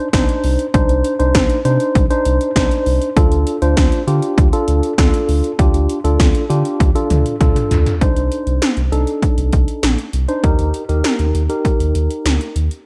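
The recording sits in a light, digital ambience, with the drums placed up front and re-recorded in a small room. This is a nocturnal, cool stretch of synth-pop in a straight 4/4, cut from a longer piece. The 80s electronic pad drums bring a punchy kick, metallic hats and gated reverb on the snare and toms, and their overdriven edge gives the beat a hard bite. Beneath them, a round analog bass blends sawtooth and sine into a deep, dark, sustained tone with a fast attack. A mellow tine electric piano supplies clean, direct accompaniment close to the listener. The harmony moves from Cmadd9 to Dm, and a drum fill from 6.8 s leads into a new section at 8.0 s, where the chords return to Cmadd9 before shifting to Eb.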